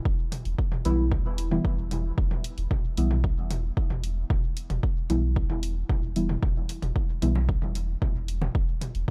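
Dub techno at 113 BPM in E minor, nocturnal and meditative, built on a punchy, up-front electronic kick and a deep, round sine sub bass pumping under the sidechain, with electronic hi-hat, reverb-washed toms and congas caught in dub echo, and a soft, warbling, vintage chord stab entering at 0.9 seconds, chorused and phased, its filter sweeping through dub echo until it drops out at 7.4 seconds, all held on E minor in a digital ambience.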